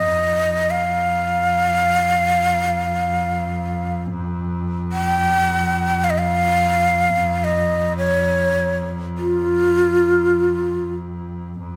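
A breathy, end-blown ney carries the melody up front from the opening, its tongued, unsteady notes shaded with vibrato, while a single distant bowed double bass sustains a biting, intense drone on F2 beneath it. This festive, warm Arabic maqam ensemble passage moves in free time, cut from a longer piece and set in a moderate recital hall reverb. The ney stops at 10.9 seconds and the bright bass, also carrying vibrato, holds on alone until 11.8 seconds.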